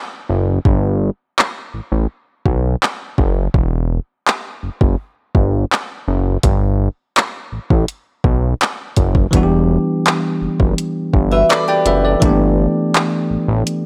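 Contemporary R&B at 83 BPM in a straight 4/4, this moody, longing excerpt moves through Gadd9 and Em chords before settling on a G69 at 12.2 seconds. A fat, thick analog bass enters up front at 0.3 seconds, its detuned sawtooth-and-triangle tone wave-folded and shaped by a filter sweep, with a fast attack and sustained notes low in the register. A smooth, produced electronic drum kit joins at 0.7 seconds with a soft kick, tape-warm hi-hats and handclaps. At 9.3 seconds a bell-like tine electric piano enters, bright, clean and direct, adding accompaniment over the Em7. A fingerpicked acoustic archtop guitar briefly plays arpeggios, its boxy body and fresh strings carrying an audible finger squeak, all set in light reverb.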